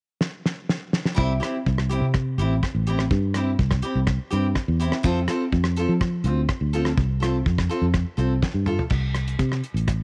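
Joyful and sunny, this short highlife excerpt moves at 124 BPM in a straight 4/4 in C major, opening with a drum fill on a damped 70s kit whose dark cymbals, fat snare and tight kick sit up front in a dry, rolled-off sound. A bright, full-bodied picked steel-string acoustic guitar enters at 1.1 seconds with accompaniment over C and F chords, while a round, foam-muted fingered electric bass joins at 1.2 seconds and carries on with the drums after the guitar stops. A second drum fill leads into a closing passage at 8.9 seconds, all heard with little reverb.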